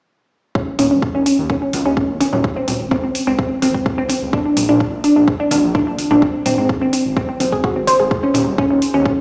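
Emotional and dreamy, this progressive house passage, cut from a longer piece, moves in a straight four-four pulse under a huge ambient reverb that hangs for seconds, heard as if played on a big sound system in a bare room yet carrying a small speaker sound. A glassy, crystalline wavetable pluck leads from 0.6 seconds with up-front arpeggios, its fast attack and decaying notes thickened by chorus, digital delay and sidechain pumping while a filter sweep runs across it. A punchy, layered electronic kick sits up front alongside it, joined at 0.8 seconds by a deep, rumbling detuned saw bass whose beating unison tone also pumps with sidechain. Metallic electronic hi-hats and congas, the congas tucked in the background with a small-room acoustic character and their own pumping, fill out the groove. Underneath, the harmony drifts from Dbsus2 over Eb through Db5, Bb and Ab before returning to Dbsus2 over Eb.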